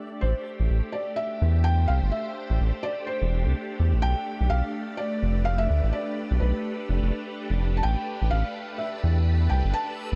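IDM at 126 BPM in A minor, this glitchy, melancholic excerpt moves with a light 16th-note swing over a chord path from Am7 to Bm7b5 and on to A7(no3) at 7.8 seconds. A soft string machine holds silky, vintage chords throughout, its slow attack and long release coloured by phaser and ensemble chorus. From 0.2 seconds a felt-muted upright piano carries the melody with a muted, intimate tone, trailed by dub echo, while a round analog bass sits up front with a deep, evolving tone shaded by ring modulation. A reversed, detuned texture, very quiet and dreamy with granular grain, swells at the opening and returns at 8.8 seconds. The production is dark and warm, with light reverb around the parts.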